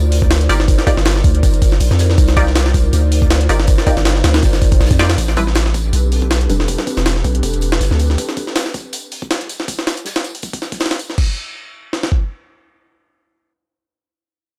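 A frenetic, raw drum and bass jungle cut opens on a drop with an airy, breathy pad beneath a deep sine 808-style bass up front, while an overdriven, pitched-up sampler kit with a thumpy kick and high-tuned snare drives hard over a soft-mallet kit in the background, a muted, detuned dub chord stab with phaser and echo gets a filter sweep at 5.2 seconds, and the drums carry on alone until 12.2 seconds in a dry, gritty small room.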